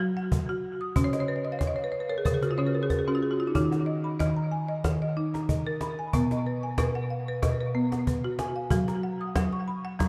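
A gently swung 93 BPM pulse in 4/4 comes from a snappy cajon with snares, played with soft hands, entering at 0.2 seconds beneath a woody, rustic folk marimba whose arpeggios, lit by a diffuse ambient delay and shimmer reverb, spread across a broad range in Eb minor. This gentle, hypnotic, meditative world fragment features a marimba fill from 1.0 to 3.5 seconds over Db13, then moves through Ebm, B and Gb. The dark production places both parts up front inside an echo chamber reverb and small room ambience.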